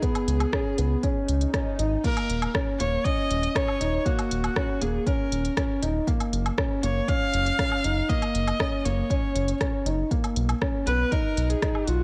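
A deep electronic kick and an organic electronic kit of smooth hi-hats, rim clicks, woodblock and crash cymbal set a straight 4/4 pulse at 119 BPM, while a round, detuned analog bass with tube saturation and sidechain pumping joins at 0.3 s. This hypnotic, intimate piano-and-strings electronica excerpt in Eb minor pairs a felt-muted upright piano riff, mellow and vintage with audible action noise, with a single bowed viola melody full of vibrato and portamento, both up front and treated with delay. An electronic swell drifts in the background from 1.2 to 2.0 s as the harmony moves through Db5, Eb7(no3), Gbmaj7 and Bmaj7 under light reverb.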